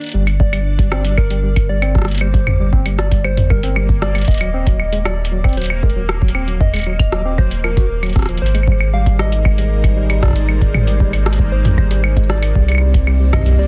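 This cut from a longer intricate, cerebral IDM piece in G phrygian at 116 BPM opens on a tape-warm electro drum machine of claves, metallic hats, rim clicks, shaker and toms, with a reversed, granular texture swelling dreamily in the background and a fleeting touch of phased analog pad. A round, dark analog bass sits up front, joined from 0.4 seconds by a deep electronic kick, while a worn, slightly out-of-tune tine electric piano plays lightly overdriven arpeggios through dub echo and a gentle FM synth lead carries a warbling, chorused melody. The swirling, detuned pad returns at 8.4 seconds with sustained chords and 12-bit sampler grit as the harmony moves from Gm through Ebm and Abadd9 to Cmadd9, inside a dense, dry, heavily limited mix.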